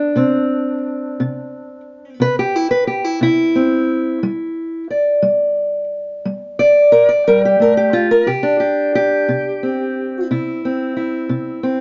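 A dark, close-sounding studio recording with a moderate touch of reverb opens this brief cut from a longer acoustic country blues piece. A single fingerpicked steel-string acoustic guitar carries everything from 0.0 to 11.8 seconds, sitting up front with a boxy, parlour-sized tone. The mood is laid-back and soulful, moving in an unhurried 12/8 lilt with a straight feel. The guitar begins over unharmonised picking before settling onto a G5 at 4.2 seconds and then a C chord at 8.3 seconds, ranging from its low bass strings up into its higher register. The slightly muted top end keeps the sound intimate and rootsy.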